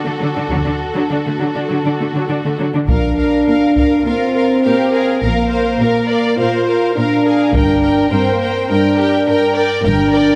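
The straight 4/4 pulse at 104 BPM carries this heroic, triumphant excerpt of an epic orchestral film score in Bb major, where bowed string sections open with a build-up: a smooth violin melody and a focused second violin line over intense violas in the background and a cello bass, with double basses adding expressive portamento from half a second in. At 2.9 seconds a dark, roomy French horn section enters up front with sustained chords, joined by a close taiko ensemble struck with hard sticks until 8.7 seconds. The chords move from D to Bb and then G minor, and a concert hall reverb gives the lush strings their space.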